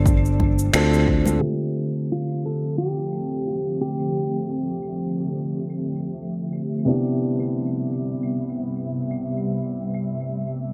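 Dark, mellow baby grand piano stands out up front, its long-sustaining accompaniment soaked in dub echo and playing through to the close of this wistful, 10.7-second sunset chillout fragment at 88 BPM in D dorian, with a lazy 16th-note swing. A bright, twangy clean electric guitar carries the melody through tape echo for the first 4.5 seconds, while a growly fretless bass sits up front briefly alongside a punchy, layered electronic kick and very quiet, close congas played with hard hands. Overdriven electronic shaker, finger snaps and claves run through analog delay for nearly the whole fragment, and the band hits an accent around 0.7 seconds. From 2.5 seconds an ethereal, airy pad of detuned sawtooth, triangle and sine layers with a sub octave fades in slowly, shimmering with ensemble chorus, tremolo and its own reverb as a filter sweeps across it. The harmony moves from G9sus4 to Dm11 and settles on Cmaj7, all wrapped in a wet echo-chamber reverb and a low-passed, echo-heavy mix.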